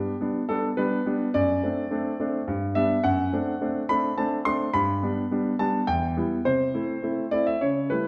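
A solo grand piano opens the recording at once, playing a cheerful, graceful classical-period sonatina in 3/4 at 106 BPM with a straight feel. Its tone is clear and smooth with a vintage character and short sustain, sitting up front and spanning from E2 to C6. The harmony moves between G and D7/F# before passing through Em and settling on Am/C near 6.4 seconds. The piano is tuned to A4 = 444 Hz. A wet recital hall reverb with a 1.4-second decay surrounds the instrument with a sense of space. The 8.1-second passage is cut from a longer piece.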